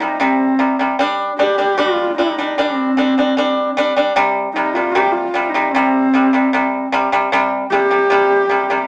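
This Mongolian traditional piece sets a vast, solemn mood at an unhurried 76 BPM in a straight 4/4, in C minor, with tuning pitched to A4 = 444 Hz. A single horsehead fiddle carries the melody between C4 and G4 for the whole 8.9 seconds, its husky, airy bowed tone shaped by a soft attack, light vibrato and gliding portamento. The fiddle sits close and intimate, up front in the mix. A pipa plays arpeggios beneath it across the same span, ranging from C3 to D4, its fingerpicked tone bright, dry and percussive, and also placed up front. The harmony moves from C5 to G5 at 1.0 seconds and back to C5 at 4.2 seconds, all within a wet studio reverb that lends the short passage, cut from a longer piece, a sense of space.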